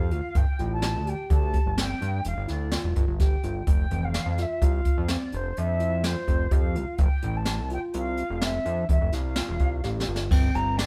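A driving 7/4 pulse at 126 BPM sets this bright, progressive instrumental in F major moving, with a straight feel, played by a band together in one room under light reverb, and cut from a longer piece. Up front, a jazz kit played with brushes gives an airy, polished sound, with dark cymbals, a high-tuned snare and a boomy kick, and it plays a drum fill from 9.8 to 10.3 seconds. Beside it sits a fat, thick analog bass, also up front, blending sawtooth and square-wave tones with a detuned edge, a fast attack, a filter pluck and sustained notes. A mellow tine electric piano plays clean, warm arpeggios through its built-in speakers, while a distant concert flute carries the melody with vibrato, tongued notes and an expressive, airy, mellow character. The harmony moves from Gsus2 to F5 and Fmaj7, arriving on Gm at 10.3 seconds.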